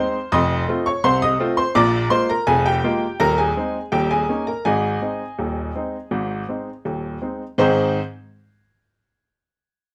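A moderate club reverb gives this short ragtime cut from a longer piece the intimate feel of a club, with the upright piano sitting up front, intimate and woody, its action noise plainly audible. The mood is playful and lively, moving at 83 BPM in a straight 2/4 in Ab major, with the instrument tuned slightly under standard pitch. The solo piano covers a broad span of the keyboard, from deep bass notes up into the bright upper register. Its harmony travels through F7 and Bb7 before settling through Eb7 home to Ab at 4.7 seconds. The piano plays until 8.0 seconds, just after a new section begins at 7.6 seconds.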